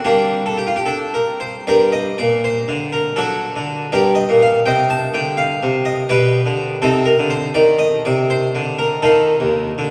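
Baroque-style classical suite movement for solo harpsichord in G minor, moving in a flowing, radiant 6/8 at 81 BPM with a rubato feel, and heard as a short cut from a longer piece. The Italian-style instrument sounds plucked, full and brilliant with three sets of strings, sitting up front and spanning Eb2 to A5 as the harmony passes from Gm through D/F#, Cm and Cm9 to an F7/Eb chord at 9.0 seconds. A long cathedral reverb of 6.4 seconds surrounds it, alongside vinyl crackle and a small room ambience, and the tuning rests at A4 = 438 Hz.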